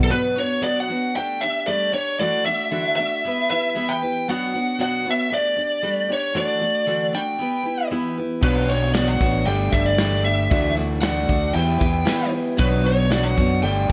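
A straight, even 4/4 pulse carries this wistful, dusty folk rock and heartland rock excerpt, cut from a longer piece and cycling through Bmadd9, Gsus2, Dadd9 and Em. At the start, an up-front, overdriven lead guitar through a small cranked amp sings the melody over a full-bodied, jumbo steel-string acoustic guitar picked in a bright accompaniment. At 8.4 seconds the band arrives: a dark, slightly broken-up electric guitar through a small old amp plays a riff, and a round, amped fingered bass settles underneath, both returning after a brief touch at the very opening. A natural country drum kit brings an airy, polished studio-room sound with a punchy kick, medium-tuned snare, hi-hat and crash cymbal. A barky, reedy electric piano, lightly overdriven through its built-in speakers, adds very quiet accompaniment. A jingly tambourine enters at 8.6 seconds, very quiet in a live room, and light reverb gives the mix a gentle sense of space.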